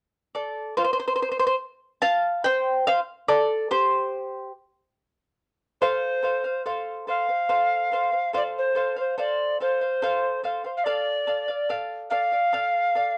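In a straight three-four lilt, this earthy, festive Andean folk fragment opens with a bright, fingerpicked charango alone and up front, its double strings shimmering through a cassette-tape grain, before an airy, woody alto recorder with vibrato and a crisp, chiffy attack takes up the melody at 5.8 s, the harmony resting on F and turning to D minor at 10.9 s, the whole home cassette recording set in a moderate studio reverb.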